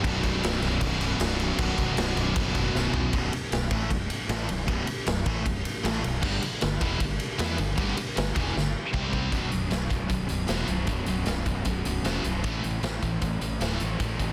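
Aggressive and heavy, this hard rock excerpt drives along at 155 BPM in B phrygian, with a raw garage drum kit up front, its punchy kick, medium-tuned snare and crashing cymbals sounding saturated and gritty in a bright stone room, with fills at 2.7 and 8.6 seconds. Behind it, three picked electric guitars churn out riffs: a biting overdriven one, a double-tracked distorted one, and a scooped high-gain one that drops out between 3.1 and 6.2 seconds, while a fuzz-laden fingered bass growls underneath. Chords move from Bm through B5, G5 and C5 before returning to Bm and landing on Am, all pressed into a dense, heavily limited modern master with light reverb.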